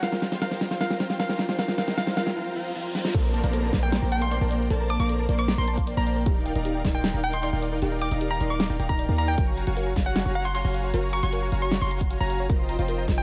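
A lush, euphoric half-time future bass section in Bb major at 154 BPM opens on a build-up where a hollow, bouncy square pluck carries the melody with chorus and tape echo, a round, tine-like thumb-piano-style pluck plays dark arpeggios in the background through digital delay, a huge, thick supersaw drives the riff, a pop drum kit with a fat, up-front snare plays a fill, and a very quiet riser, reverse cymbal and downlifter sweep underneath through a short break and on into the drop, until at 3.1 seconds the drop lands with a deep, boomy 808-style bass and a punchy electronic kick, all bathed in light reverb and sidechain pumping on the synths and bass as the chords move from Bbmaj7 through Ebmaj7 and Gbmaj7 to F7sus4.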